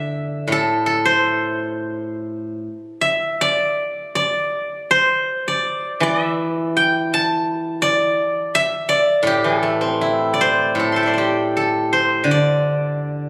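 The rhythm is free and rubato, loosely around 78-85 BPM in 2/4, so the pulse stretches rather than marching evenly. This is a short passage cut from a longer Chinese traditional solo for plucked strings, set in the A yu mode, with a longing, contemplative mood. A single acoustic steel-string zither, played with fingerpicks, carries the whole performance from A2 up to C6, its silvery, ringing tone sitting up front in the sound. The opening passage unfolds until 10.8 seconds, when a new section begins and runs to the close at 13.3 seconds. A moderate recital hall reverb lingers around the notes, joined by a club reverb and compression, and the phone recording captures the instrument in the room.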